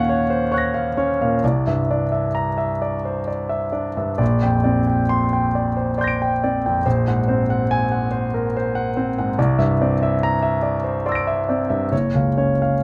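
Serene and dreamy, this short excerpt of impressionist solo piano unfolds in 3/4 at a flexible 64-73 BPM, with rubato letting the pulse breathe freely. A clear concert grand piano carries the entire piece alone, spanning from Gb1 deep in the bass up to D7 in the high treble. Its sound is intimate and up front, polished yet touched with audible action noise, and its deep bass and long sustain let each chord ring and blend. Lush extended harmonies drift from Ebm9 through C9 and Bb69 to Ab9/Bb, returning to C9 before settling on Gbmaj7(no3) near 11.9 seconds. A light reverb adds a soft sense of space around the instrument across the 12.8-second passage, which is cut from a longer piece.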